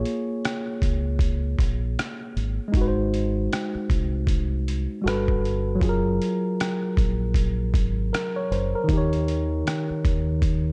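A worn, slightly out-of-tune tine electric piano, lightly overdriven and filtered, opens this melancholic, nostalgic lo-fi hip hop fragment over a round, punchy deep dub fingered bass, joined at 0.1 seconds by a gritty, pitched-down sampler-style trip hop kit with a thumpy kick, hi-hat and rim click set up front in a large room, while the harmony drifts through Bbm7, Ab7, Gmaj9, Gbmaj9 and Eb7 over a swung sixteenth-note feel in a dark production with light reverb.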